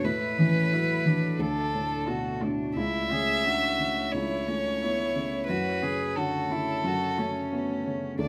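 A moderate studio reverb gives this short cut from a longer neoclassical piece for piano and strings a soft, close sense of space. At 89 BPM in 4/4, played with a rubato feel and tuned to A4 = 441 Hz, the music sounds hopeful and tender throughout its 8.3 seconds. Up front, a felt-muted upright piano supplies the accompaniment in its lower and middle register, its thick felt lending a mellow, vintage intimacy. Equally close, a single violin carries the melody with a rich tone, light vibrato and an airy, sul tasto bow. A lone cello plays a second line beneath it, pure and floating but set more distant in the mix. Far in the background, a warbling, lo-fi pad with chorus and its own reverb holds nostalgic, detuned chords over a progression that moves from A to D, A/C# and F#m.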